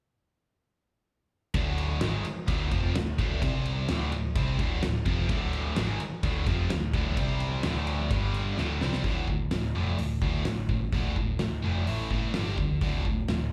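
Menacing, driving hard rock in D minor at 128 BPM, cut from a longer live club gig heard through the venue's PA, where a cranked stack guitar with overdrive, phaser and slapback echo and a bright high-gain distorted guitar riff over a dark, round hollow-body picked bass and a huge arena drum kit with a fat snare and boomy kick up front, while a tight, double-tracked distorted guitar joins in the background from 5.3 to 9.0 seconds, just as a drum fill at 8.6 seconds leads into a second section.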